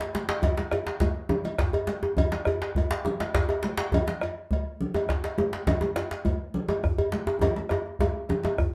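Powerful and festive, this short West African traditional drum ensemble passage moves in a straight 12/8 at 137 BPM, counted in dotted quarters. A round, close bombo and a medium-tuned djembe with metal rattles and a vintage, band-limited tone sit most prominently. A tight, cracking second djembe sits up front in a live room, alongside a metallic cowbell and bright, high-tuned congas heard at a distance in a large room. Moderate studio reverb surrounds the ensemble, and a drum fill from 7.4 seconds closes the cut.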